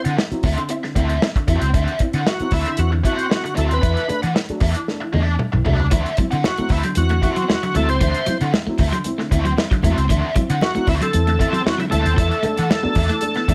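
Funk at 115 BPM in a straight 4/4, playful and energetic, cut from a longer piece and tuned to A4 = 439 Hz. A bright tonewheel organ carries the melody up front, shouting through light overdrive with key click, chorus vibrato and a slow rotary speaker. Beneath it sit a biting overdriven guitar played through wah, a boxy, slightly detuned upright piano playing woody stabs, and a round, punchy foam-muted bass, all over a dry soul drum kit with a tight kick and a rolled-off top. After a drum fill starting at 4.9 seconds, a compressed clean guitar riff enters in the background at 5.9 seconds, together with very quiet, close congas with a thin skin. The harmony moves between D9 and E9sus4 under a light reverb.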